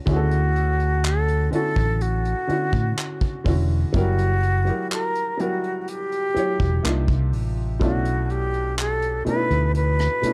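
A mellow silver concert flute carries the melody, airy and expressive with a soft attack and vibrato, its line set in a tape echo and placed up front. This tender, romantic piece of contemporary R&B moves at a slow 62 BPM in a straight 4/4, in D major. Beneath it, a felt-muted upright piano gives intimate, vintage accompaniment with a short sustain from its thin felt, while a fingered electric bass sits up front with a round, amped tone reaching down to E1. A soft brush drum kit, natural and close in a small room, marks time with handclaps, hi-hat, a tight kick and rim clicks. The harmony opens on Dmaj9, shifts to F#7b9 at 3.9 seconds, then moves through Cm11 and Bm11, all within a dark, warm production wrapped in studio reverb, in a passage cut from a longer piece.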